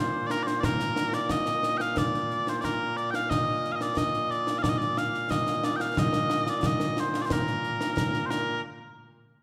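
Stirring and ceremonial, this brief excerpt of Scottish traditional pipe music moves at 90 BPM in a straight 4/4, set in Bb major. Mellow small bagpipes carry the melody up front with a sweet, continuous tone and vibrato, joined at 0.3 seconds by concert snare and bass drums with bright cymbals and an acoustic, live-room presence. A moderate reverb lends the whole performance the resonant air of a church or concert hall.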